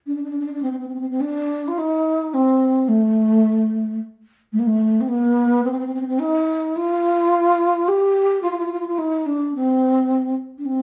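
A lone alto flute enters almost at once, carrying a stately yet passionate melody in the Arabic tradition. Its tone is breathy and mellow, with a soft attack, vibrato, an unsteady quality and a wooden-headed character, and the line stays in a low, dusky register. The playing moves in an uneven 10/8 metre with a straight feel, and the instrument is tuned slightly low to A4 = 436 Hz. The flute sits up front yet carries a distant quality, set in a wet studio reverb that suggests musicians playing live together in one room. This short passage, lifted from a longer piece, runs from 0.1 to 10.8 seconds as a single unbroken section.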